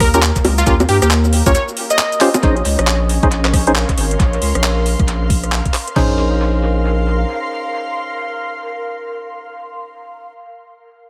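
A bouncy, late-night slice of two-step UK garage with a swung feel, cut from a longer piece and opening straight on a drop over an Eb7 chord. A punchy, catchy detuned sawtooth lead carries the melody with dub echo for the first 2.4 seconds, while a smooth analog pad with chorus and tremolo holds chords in the background and a thick, saturated sub bass pumps up front until 7.2 seconds. Two layers of electronic garage kit drive the groove: one with a knocking kick, toms and crash cymbal, the other with metallic hats, bongos, handclaps, rim clicks and shaker sent through dub echo, both carrying a tape-like warmth. A hollow, mellow organ stab with chorus and analog delay punctuates throughout, and from 3.1 seconds an ethereal, airy pad with ensemble chorus, phaser and its own reverb drifts in over the Bbm11 harmony. The mix is echo-heavy with light reverb, giving the track a spacious, nocturnal sheen.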